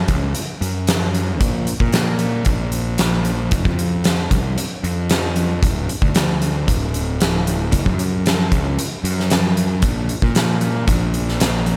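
Brooding and dark, this short cut from a longer quiet-loud alternative rock piece moves at 114 BPM in a straight 4/4. A picked electric bass, overdriven into round fuzz, sits up front from the very start, and a huge arena drum kit joins at 0.1 seconds with a fat snare, a punchy kick and hi-hat in a big room. A light reverb frames the heavy, close-up pairing through to the end at 11.8 seconds.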